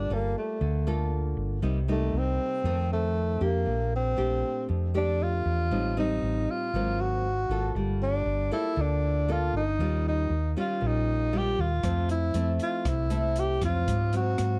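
A dark, intimate small-room sound frames this short bossa nova excerpt, moving at 118 BPM in a straight 4/4 with a smooth mood. A breathy tenor saxophone sits up front and solos throughout, its jazz-style line carrying light vibrato and scooped notes between A3 and G4. Beneath it, a fingerpicked nylon-string guitar plays classical-style accompaniment, while a round, amped hollow-body electric bass holds the low end close to the listener. At 11.8 seconds, a softly placed acoustic jazz kit arrives with hi-hat, rim click and a boomy kick, its top rolled off. The harmony drifts through rich jazz colours, opening on Gm9 and passing through Bbmaj13 and Am7b5 before settling toward Fmaj7 and G#13.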